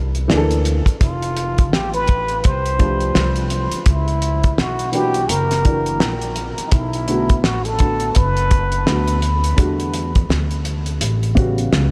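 A breathy trumpet with a plunger mute carries the melody in this smoky, mellow jazz-hop excerpt, entering at 1.0 seconds and playing until 9.2 seconds with a soft attack, a whispered wah-wah tone and a diffuse ambient delay that trails behind its jazz-style solo. Up front beside it sits a cloth-damped drum kit with a thuddy, small-room sound: a fat snare, a tight kick and hi-hat, all with a rolled-off top. Underneath, a pizzicato upright bass with steel strings gives a woody low end. A dark upright piano supplies intimate, short-sustained chords through an analog chorus, its vintage character marked by audible action noise. The swung groove moves through extended and altered harmonies such as Em13, F#aug7 and Bm7, and the whole dreamy mix is soaked in a huge ambient reverb.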